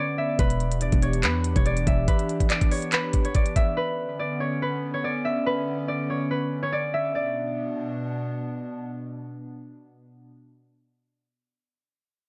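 A half-time trap groove of knocking kick, crisp hi-hats and handclaps carries a gritty, lo-fi sampler edge from 0.4 seconds, with a growling, buzzy 808-style bass that decays and drops out by 2.1 seconds while the drums stop at 3.7 seconds. Over a dark, hollow pad with a flute-like chorus shimmer, an up-front concert harp plays a ringing, fingerpicked melody softened by a low-pass filter and trailed by tape echo, moving through Em7 and Bmadd9 before settling on Bm. The mood is melancholic yet menacing, with light reverb around this fragment of a longer piece.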